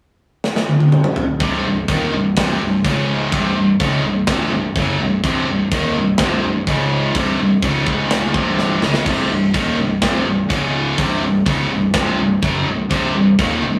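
Heavy metal at 125 BPM in 4/4, this relentless, aggressive clip from a longer piece sits in C phrygian and keeps a straight feel throughout. A tight metal drum kit opens at 0.4 seconds with a fill across crash, hi-hat, kick, snare and toms, its medium-tuned snare and tight kick sounding gritty and mid-forward in a big room. At 1.4 seconds two picked, distorted electric guitars crash in together with the riff, one of them high-gain, both bright and up front, while a fuzz-laden fingered bass growls underneath through its overdrive. The harmony circles between C minor and D-flat power chords, with a brief C power chord along the way, and the drums throw in another short fill around 8.6 seconds. The rough rehearsal-room sound carries tube saturation and moderate studio reverb, giving the whole clip a raw, in-the-room punch.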